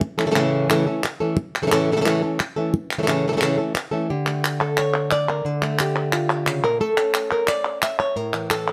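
Crisp, close palmas hand claps drive a straight 4/4 pulse at 177 BPM from 0.2 seconds as a fingerpicked flamenco guitar, up front with audible finger squeak, carries an intense, mournful melody in A phrygian dominant across a range from A2 to E5, moving from A to D5 at 4.1 seconds and back to A in this brief flamenco fragment under light reverb.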